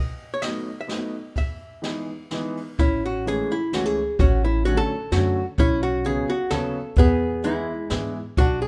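A lilting 3/4 swing at 128 BPM, lightly swung on the eighths, carries this short fragment of a musette waltz in A major, nostalgic and charming in mood. A clean, compressed hollow-body electric archtop guitar sits up front with the picked melody, its dark tone miked through an amplifier, while a pizzicato upright bass with steel strings gives an acoustic, woody foundation from the very start. At 0.4 s an upright piano joins with intimate, smooth, vintage-sounding accompaniment, its long sustain and audible action noise adding a homely touch. A brush kit enters at the same moment, also up front and carrying the natural ambience of a small room, with a high-tuned snare, boomy kick, hi-hat and ride cymbals of a muted shade. The harmony moves from B7 and Emaj7 into a new passage at 2.8 s that settles on Amaj7, passes through Dmaj7/A and Bsus2, and reaches E, all framed by light reverb.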